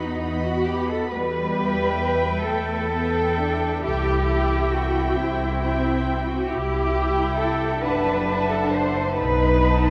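A veiled, muted cello section sits up front in this slow, melancholic and yearning romantic movement for string orchestra, with a dark double bass section beside it anchoring the low end. Two con sordino violin sections, one carrying the melody with light vibrato and one a second line with fuller vibrato, drift smooth and in the background, while the violas add soft-attacked accompaniment, all moving in a rubato 6/8 through minor harmony that turns toward B7 at 9.2 seconds. The whole ensemble is bathed in a huge, wet ambient reverb suggesting a vast, echoing space, and the passage is cut from a longer piece.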